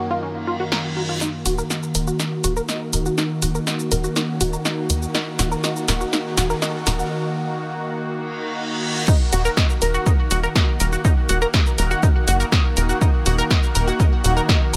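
A driving 122 BPM pulse in Eb minor arrives only at 9.1 s, when a punchy, tape-warm electronic kick lands for the drop after a build-up where a punchy analog drum machine's snare, hi-hat, shaker and crash pump under sidechain, with a fill giving way to a break at 7.1 s. This dramatic, cinematic melodic techno passage, cut from a longer piece, opens on a Gbmaj7 before settling on Ebm, as a tight, detuned sawtooth arpeggio with phaser and digital delay and a lush, warbling unison pad both pump and sweep through filters, joined by a tight sequencer bass with a moving notch from 1.5 s. A very quiet nasal drone on Eb evolves beneath, while reverse cymbals and a riser mark the transitions, all set in light reverb.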